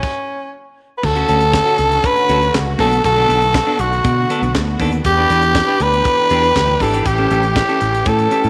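Danceable and sultry, this disco cut moves at 120 BPM in a straight 4/4, lifted from a longer piece. For the first second a raspy tenor saxophone and a tight funk drum kit play alone in a stop over an open, chordless moment, the sax gritty and punchy up front with vibrato while the kit offers a high-tuned snare, tight kick, hi-hat, handclaps and crash cymbal. At 1.0 seconds the band drops in: a growly picked electric bass sits up front, a clean electric guitar adds picked accompaniment, and a lush bowed string section holds sustained chords in the background. The harmony moves through Dmaj7, Bm7, Em7 and A7, giving the sax's edgy pop-style solo line a bed to ride. A light, small-room reverb surrounds the mix, with the saxophone clearly leading.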